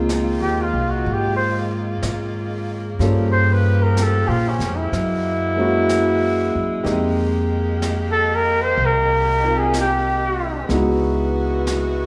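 A slow swung ballad pulse at 62 BPM in 4/4 carries this intimate, romantic jazz excerpt, with a woody, pizzicato upright bass sitting up front in the low register and a brushed drum kit of snare and hi-hat entering at 0.1 s, set quietly behind it in a natural, small-room sound. A concert grand piano supplies accompaniment with a warm tone, deep bass and audible action noise, while a saxophone section holds sustained chords with clear, present vibrato. From 0.4 s a mellow trumpet takes the solo melody with a soft attack, up front yet carrying a distant, roomy quality, and it finishes at 10.7 s. The harmony moves from Dbmaj13 through Gm7b5, Gb9 and Fm11 before settling on Dbm11. A wet recital-hall reverb wraps the ensemble in the glow of a church or concert hall.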